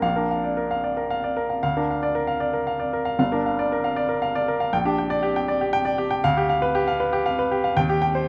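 A clear baby grand piano plays alone from the opening moment, in a stormy, agitated classical study with virtuoso demands, set in 6/8 with rubato. Reaching from G1 up to G5, the polished, up-front tone has a short sustain, and its harmony moves from Bb through Gm7 and G7/D before landing on Cm/Eb at 7.8 seconds. Close, detailed microphones and light reverb frame this brief excerpt, which breaks off at 8.3 seconds as part of a longer piece.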